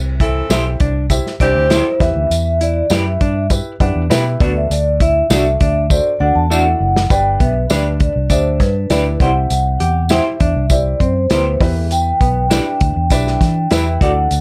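Uptempo 1960s-style soul at 100 BPM in a straight 4/4, uplifting and danceable, cut from a longer piece. An up-front drum kit with a tight kick, a medium-tuned snare and hi-hat sounds roomy with a rolled-off top, while a round, punchy, foam-muted electric bass anchors the low end and a close, jingly tambourine rides along. A dark, woody upright piano with short sustain accompanies throughout, a clean hollow-body jazz guitar carries a riff, and a twangy, slightly broken-up guitar through a small old amp adds lo-fi stabs. A clear saxophone section with light vibrato plays a brief second line near the start, and the soft-mallet vibraphone enters at 1.4 seconds with a ringing, metallic melody, taking a solo in the first half before a drum fill leads into the second half at 7.1 seconds. The harmony moves through C, Em and D, then G, C and Em, with light reverb on the mix.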